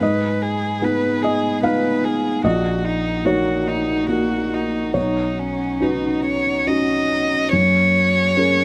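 A single violin carries the melody up front, its rich tone shaped by light vibrato, a soft attack and an airy sul tasto bow that sits intimately close to the microphones. Alongside it, equally up front, a felt-muted upright piano plays the accompaniment with a mellow, hushed character, its natural action noise clearly audible. Further back, a warm chamber string section holds sustained chords, also played sul tasto with light vibrato. This is a short excerpt of neoclassical piano and strings in F# major and 3/4, moving with a rubato feel at roughly 68-75 BPM. The mood is hopeful and tender as the harmony passes through G#m, D#m7/A#, and Badd9 before settling on F#add9 at 7.5 seconds. Light reverb and detailed close miking keep the sound intimate.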